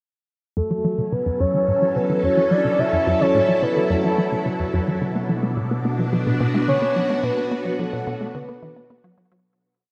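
Over a straight 4/4 pulse, a resonant blip pluck runs a 12-step loop that drifts against the bar, giving this ambient, sequencer-driven space music a cosmic, expansive feel. From 0.6 s, the juicy, squelchy pluck sits low with a fast attack, short decay and echoing delay, while a filter sweep moves across its arpeggiated line. A swirling, vintage string machine sits up front with slowly shifting sustained chords, its phaser and ensemble chorus adding motion as the harmony moves from F#m7 to Bm at 5.0 s. Above it, a soft, round lead layered in octaves with a sub octave sings a free, dark-toned melody, colored by tremolo, vibrato and delay. A huge, wet reverb with a long tail washes over the whole mix before a fade-out from 6.5 s closes the piece.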